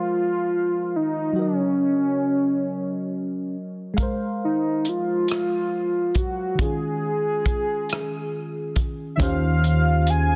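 Tender and warm, this short excerpt from a longer piece is a slow six-eight R&B groove at 46 BPM, counted in dotted quarters, with a straight feel in Ab mixolydian. A velvety synth lead carries the melody up front, its smooth sawtooth, triangle and sine blend with a sub octave, vibrato, chorus and tape echo, ranging from Db4 to Ab5. Beneath it, a mellow FM electric piano supplies soft, round, dark chords with a noise layer and chorus, moving through Ab69, Gb6 and Eb9sus4. A soul drum kit enters at 4.0 seconds with hi-hat, tight kick and rim click, its top rolled off and its snare softly clipped, sounding distant and roomy yet up front. At 9.2 seconds the harmony shifts to Eb13 and a round fretless electric bass joins on Eb2, up front and bathed in lush chorus. Light reverb and a small room ambience surround a dense, heavily limited modern master.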